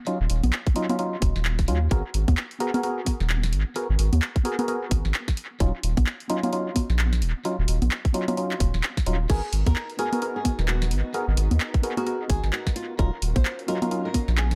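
Skippy and late-night, this two-step UK garage excerpt swings its sixteenths over a steady 4/4, moving between D#m9 and G#m9 chords. A tight, layered electronic kick sits up front beside a deep, round sub bass with a soft square-and-triangle tone, while a punchy, overdriven analog drum machine adds a dry snare, handclaps, hi-hat, congas and crash cymbal, touched with tape echo. Hollow, organ-like stabs with a fast attack and decaying tail punctuate the groove from the start, their mellow tone thickened by analog chorus and tape echo. At 9.3 seconds a dark, fingerpicked flamenco guitar enters with fresh strings and audible finger squeak, its line trailed by tape echo. At the same moment a silky vintage string machine swells in the background with slow-attack chords, colored by ensemble chorus and sidechain pumping. The mix is echo-heavy with light reverb, keeping the low end firm while the upper parts float.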